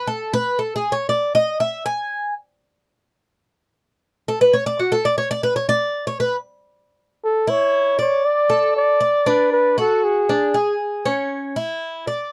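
A Cuban tres opens this relaxed Latin excerpt alone, its picked, metallic double strings spinning up-front arpeggios. At 7.2 seconds a breathy, whispered flugelhorn enters with a mellow pop-style melody, shaping scooped notes with soft attacks and vibrato over chords that move from Aadd11/E through D5 and D6 before it falls away at 10.8 seconds, leaving the tres to settle onto C#m. The dry, close 1970s-style studio sound, touched with light reverb, keeps both instruments intimate and near.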